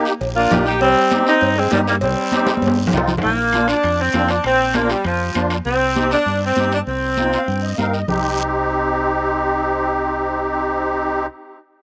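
A dry outdoor sound with little reverb frames this fiery, driving cumbia cut from a longer piece, moving at 198 BPM in 4/4 with a straight feel in C minor. Up front, a clear saxophone section carries the melody with a soft attack and jazz-style phrasing until 7.7 seconds, while a reedy musette accordion with shimmering wet tuning and slapback echo supplies accompaniment throughout, adding a fill from 7.2 to 8.1 seconds. In the background, a punchy, close-miked trombone with vibrato plays a brief second line that ends at 2.9 seconds. A deep, round dub electric bass gives a dark, amped foundation, and a raspy guiro rides along with high-tuned, ringing congas and vintage, band-limited cowbell and timbales, the congas and the cowbell and timbales carrying slapback echo. A drum fill from 2.5 to 3.2 seconds marks the move from Eb and C minor toward Bb, and after the percussion drops out around 8.2 seconds, only accordion and bass carry the close.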